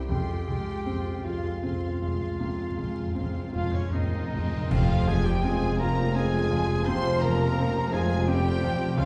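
Passionate and brooding, this rubato Romantic excerpt for piano and orchestra in F minor moves in a slow 12/8 as a clear concert grand carries the melody over deep bass alongside lush, vibrato-rich violins, with a solo clarinet line, violas, cellos and dark double basses, a timpani fill and dark cymbals with bass drum, before flute, oboe and dark trumpet stabs enter at 3.5 seconds with mellow horns just after, trombones and tuba join a band accent at 4.7 seconds, and a quiet bassoon arrives at 6.9 seconds, all set in a reverberant recital hall heard from further back with vinyl crackle.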